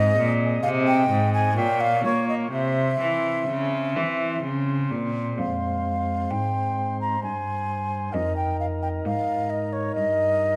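A grave, introspective baroque-style sonata movement with continuo in a straight 3/4, cut from a longer piece, where an airy wooden baroque flute with vibrato and a crisp attack carries the melody over a soft pipe organ on flute stops with tremulant and romantic voicing and a single bowed cello with a rich gut-string tone and reedy edge, all three up front in a moderate recital hall reverb as the opening phrase returns at 5.4 seconds.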